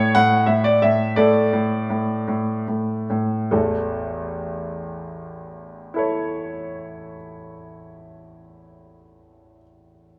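A bright, up-front baby grand piano opens this cheerful, playful fragment of a classical-period sonatina in A major, slowing down through the first 3.5 seconds before settling onto an A major chord. The solo piano moves in 6/8 with free rubato at roughly 47-62 dotted-quarter beats per minute, ranging from A1 up to F#5 with a brilliant, open tone. A moderate recital-hall reverb lends it a sense of space.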